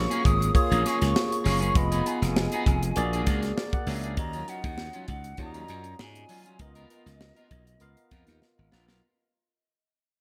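Polished 1980s jazz-funk pop with a glossy, breezy mood, this short excerpt moves at 99 BPM in 4/4 with a light swing on the sixteenths and fades out across its whole nine seconds. A breathy, mellow silver concert flute carries the melody with vibrato and tongued notes, close-miked and hollow in tone, its line trailed by an analog delay. Beneath it, a barky tine electric piano comps through a combo amp with light overdrive and analog chorus, while a slightly broken-up, twangy electric guitar plays a fingered riff, also colored by chorus. A glassy, growly slap bass sits up front alongside a tight funk kit of hi-hat, tight kick and medium-tuned snare, dry and airy, which closes with a drum fill at 8.4 seconds. The harmony drifts from A#m7 through Fm7b5 and A#7alt to D#m9 and C#13, and the whole mix is soaked in a dreamy plate reverb.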